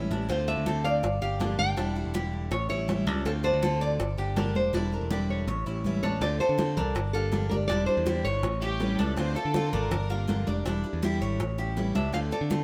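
A straight 4/4 pulse at 162 BPM drives this nostalgic, warm Cuban son and guajira passage in D minor, with bright, thin-skinned congas and round, saturated bongos sitting in the background beneath a growly, punchy electric bass up front. A concert-toned picked steel-string acoustic guitar and a metallic, double-strung Cuban tres playing arpeggios fill out the accompaniment, while a fingerpicked classical nylon-string guitar, finger squeaks audible, carries the melody over seventh-chord changes, with a drum fill leading into the second section at 6.2 seconds. A soft-attack, floating bowed violin section adds a brief second line from 8.6 seconds, and light reverb gives the mix a gentle sense of space.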